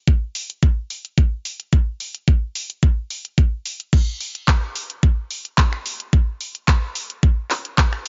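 A straight 4/4 nu-disco groove with a cosmic, sensual mood rides on an up-front, overdriven electronic kick with a knocking tone, layered with a quieter, also overdriven pop drum kit of crash cymbal, finger snaps, handclaps and hi-hat, both re-recorded in a small room, giving this dry, gritty excerpt a dulled top end that stops at 7.5 kHz.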